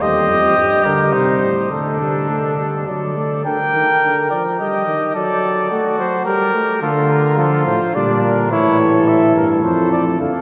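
Bathed in the long, wet reverb of a church or concert hall, this lively, elegant excerpt of a classical imitative canzona in G minor moves at 107 BPM in 3/4, with a mellow trumpet up front carrying the melody with light vibrato, a clear, vintage-toned flugelhorn singing the second line, a dark euphonium supplying accompaniment, and a warm bass trombone anchoring the bass until it drops out at 3.4 seconds and returns at 6.8 seconds.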